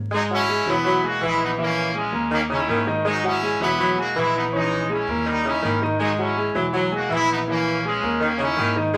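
Vinyl crackle and a wet studio reverb color this fiery, danceable Latin excerpt, where a distant, roomy trumpet section carries the melody with light vibrato over a bright, punchy, close-miked saxophone section, a woody pizzicato upright bass, and a polished grand piano with audible action noise and long sustain, all cycling through Eadd9, A#m7b5 and D# chords.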